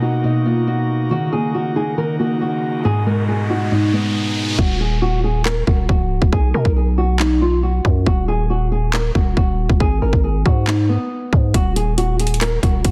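Dense, heavily limited and lit by a light digital reverb, this brooding, hard-hitting half-time trap fragment opens with a small, thumb-plucked nylon-string guitar melody over dark, felt-muted synth keys and a nasal chamber organ cornet stop with chiff and tremulant, while a downlifter and riser sweep in from 2.5 seconds. At 4.6 seconds the keys and organ drop away as a growling, buzzy 808-style bass and an up-front trap kit of hard-clipped kick and handclaps take over beneath the guitar. The metallic hi-hats join only at 11.5 seconds.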